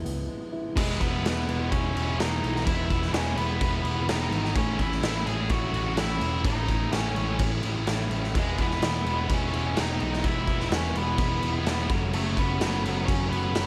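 Brooding and cathartic, this quiet-loud alternative rock excerpt in a straight 4/4 opens with a boxy fingerpicked parlour acoustic guitar, finger squeak and slapback echo included, which drops away at 0.8 s as a brief break gives way to the full band. From there a dark octave-fuzz lead guitar carries the melody over two riffing guitars sitting in the background, one sludgy and overdriven, the other a bright, thick fuzz with slapback echo. Underneath, a growly, punchy overdriven bass and an up-front, gritty garage drum kit with a pumping stone-room sound and rolled-off top drive the chords from E through A and back to E before landing on F#m, all under light studio reverb.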